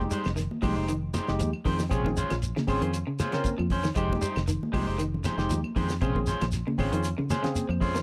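Afrobeat at 117 BPM in 4/4 with a straight feel, this funky, hypnotic excerpt in F minor cycles between Fm9 and Bbm9 over about eight seconds. A barky tine electric piano, lightly overdriven through a combo amp with subtle chorus, carries the accompaniment and adds a fill from 7.0 s to the end. Two slightly broken-up, twangy electric guitars share the mid-range: one picks low arpeggios through an ensemble chorus in the background, while the other adds picked stabs. A fingered electric bass, round and foam-muted, anchors the low end between F1 and F2. A cloth-damped, thuddy drum kit with a fat snare, tight kick and rolled-off top drives the groove alongside a grainy shekere, faint woody claves and high-tuned, thick-skinned congas played with soft hands. A small room ambience gives the dry, close sound a little space.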